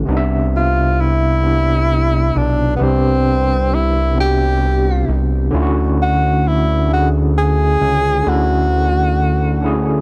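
A slow six-eight pulse with a straight feel sets up this intimate R&B passage, cut from a longer piece. An overdriven tine electric piano carries the accompaniment through a combo amp, its bright, barky, gritty tone shimmering with a medium tremolo. Beneath it sits a fat analog bass, thick and detuned, with a wave-folded sawtooth edge, a fast attack and sustained notes placed up front in the mix. From 0.6 seconds a breathy tenor saxophone takes the solo melody in a jazz style, whispered and soft in attack, colored by vibrato and scooped notes. The harmony rests on Cmaj9 before shifting to Dmaj9 at 5.5 seconds, and light reverb with small room ambience gives the dark, warm production a close, private mood.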